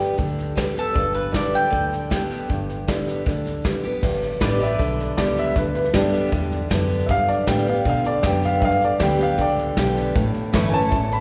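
A polished, woody upright piano takes a solo from 4.4 s in this heartfelt, down-home honky-tonk and classic country excerpt, after a picked, double-strung mandolin carries the melody until 3.6 s. Underneath, a bright, full-bodied dreadnought acoustic guitar picks the accompaniment, a soft brush kit with dark cymbals and a punchy kick keeps a straight 4/4 feel, and a round, foam-muted vintage electric bass enters at 0.2 s, while a clean pedal steel guitar arrives with the piano to add sustained chords and volume swells in the background. A long, wet church reverb surrounds the ensemble.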